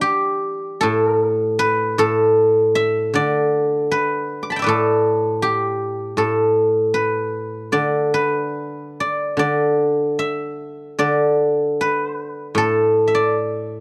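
A solo guzheng, played with fingerpicks, opens this brief, elegant and serene passage of Chinese traditional music, its silvery, ringing tone sitting up front in a dry, close 1970s-style studio sound as it moves with a free, rubato flow across a broad range for about 13.8 seconds.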